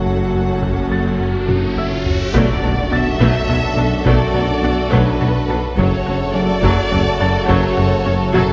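In a straight 6/8 pulse, this relentless, futuristic hybrid orchestral and electronic cue opens on a bed of bowed strings: lush violins on a second line, expressive violas sliding in the background, and very quiet cellos and woody double basses. These are joined by a menacing, saturated detuned saw bass, a deep round analog bass riff, a warbly lo-fi tape pad, distant French horn chords, and a bright, chorused analog pluck arpeggio. Close, dry taiko drums and a brilliant delayed baby grand piano texture soon follow, and a warm violin melody with vibrato enters at 1.5 s. An electronic riser lands in an impact at 2.3 s, where a mellow tuba and a punchy trombone section add weight to the shift from F#m to Bm7, all set in a moderate scoring-stage reverb.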